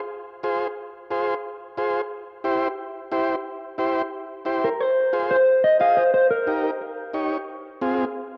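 A straight 4/4 Latin pulse at 179 BPM drives this passionate, fiery fragment cut from a longer piece, where a reedy vintage combo organ with heavy vibrato comps through Fm and C chords from 0.4 seconds before the music settles into F minor, and a dark, fingered, mellow electric guitar sits up front with a brief clean melody from 4.6 to 6.6 seconds over Fm and Eb, both parts carrying cassette-tape grit and bathed in a wet spring reverb in a homespun cassette recording.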